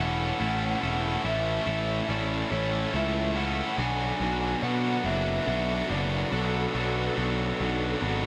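A slow, straight 6/8 pulse at 47 BPM in dotted quarters carries this cinematic, hopeful post-rock passage, cut from a longer piece and tuned slightly low to A4 = 438 Hz. Across its 8.3 seconds, the harmony moves from Amaj7 to Bm7 at 3.8 s, with every part sounding throughout. Up front, a bright, tightly distorted guitar riff sits beside a round, punchy fuzz bass played with a pick. Further back, a lo-fi overdriven garage guitar adds a second riff. Above them, a lead guitar through a small cranked amp sings a warm, overdriven melody trailed by digital delay. A very quiet, dark string section holds intimate sustained chords, bowed sul tasto with light vibrato and a soft attack, and a light reverb surrounds the whole ensemble.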